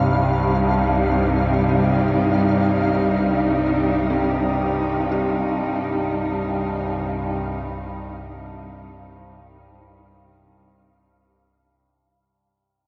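Soaked in a dark cathedral reverb, this desolate, unsettling dark ambient drone excerpt in C minor drifts in free time and fades out from 0.9 seconds onward. Up front, a veiled, muted chamber cello section holds sustained bowed chords with vibrato, beside a nasal, wave-folded drone whose overtones keep moving in the low register. An eerie, inharmonic synth bell plays mellow arpeggios with chorus and tape echo in the background, while a grainy, flickering texture hovers high above.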